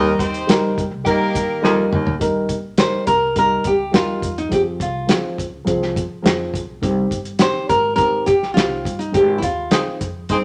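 Uptempo 1960s-style soul in Eb major at 104 BPM, this joyful, danceable excerpt opens with a smooth-topped horn section in loose octave doubling and a baritone saxophone riff with light vibrato, over a dark, boxy upright piano and a woody, thumpy pizzicato upright bass sitting in the background. A drum fill at 1.6 seconds from the cloth-damped, thuddy kit, with its fat snare, tight kick and gritty, saturated, rolled-off sound, leads in a fingerpicked nylon-string guitar melody at 2.8 seconds, up front with audible finger squeak as the chords move from Eb through Fm and Cm to Ab. The horns return for a band accent near the close, all set in moderate studio reverb.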